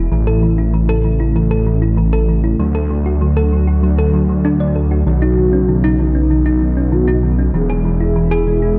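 Nostalgic yet driving, this short synthwave excerpt moves at 97 BPM in a straight 4/4, with a dark, full-bodied analog pad sustaining chords through A, D, Badd9 and E under a round, tine-like thumb-piano-style pluck spinning delayed arpeggios. A thick, saturated detuned saw bass sits up front, anchoring the low end with a mellow, chorused unison weight. At 5.1 seconds a smooth, expressive portamento lead enters with vibrato and a moving notch, gliding through its short melody in a lush hall reverb.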